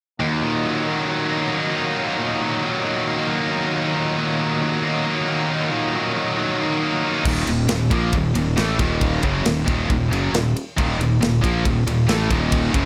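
Two distorted high-gain guitars open at 0.2 s with an epic, relentless heavy metal riff in Eb minor at 136 BPM, one guitar scooped and the other heavier, with a soft pipe organ playing sustained chords on tremulant flute stops in the background. At 7.2 s the organ drops out and a growly, fuzz-overdriven fingered electric bass enters, joined almost at once by a tight metal drum kit with a tight kick, medium-tuned snare, crash and ride cymbals and a rolled-off top end. The dry, up-front mix keeps the picked guitars bright and close in this cut from a longer piece.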